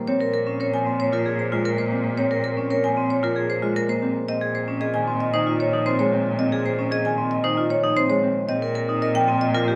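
Light reverb surrounds this meditative, hypnotic excerpt of minimalist classical pattern music in Bb minor, moving at 114 BPM in a straight 4/4. Up front, a bright, percussive marimba struck with hard mallets carries the melody, while a metallic vibraphone, also played with hard mallets and given a slow motor vibrato, spins dark, ringing arpeggios. A thumb-plucked acoustic Celtic harp supplies accompaniment, and a clear, distant bowed cello holds a smooth, even Bb2 with vibrato beneath chords that move from Bbm7 to Dbmaj7/Bb and then Cm7/Bb.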